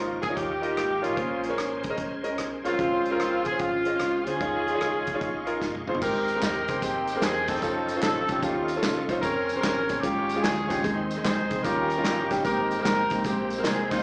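A tight, up-front horn section carries the melody in this hopeful, soulful uptempo gospel excerpt, cut from a longer piece and swinging at 149 BPM in Ab major, its brass lightly vibratoed and touched with slapback echo. A clear, smooth grand piano with a vintage, short-sustain tone shares the foreground with the same echo, while a reedy tonewheel organ holds sustained chords in the background through a slow rotary speaker, light overdrive and chorus vibrato, its key click audible. A breathy, raspy alto saxophone adds a solo melodic line from 0.2 to 5.6 s, and a hollow-body electric bass gives a dark, round, amped low end. A natural-sounding country drum kit with a punchy kick and medium-tuned snare plays a fill just before the 6.0 s mark, where tambourine, egg shaker and group handclaps join. The whole band is heard as a live gig through the venue's PA, with a small-speaker quality and moderate club reverb.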